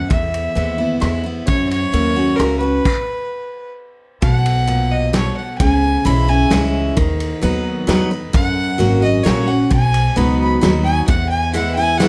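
A clear, earthy bowed fiddle, a bright, full-bodied picked steel-string acoustic guitar and a woody, thumpy upright bass open this sunny, heartfelt honky-tonk country piece in three, joined by an acoustic drum kit with a punchy kick and a rolled-off top, and after a stop at 2.9 seconds the fiddle takes a solo from 4.2 seconds before a very quiet, worn grand piano with audible action noise enters at 10.2 seconds, all in light reverb.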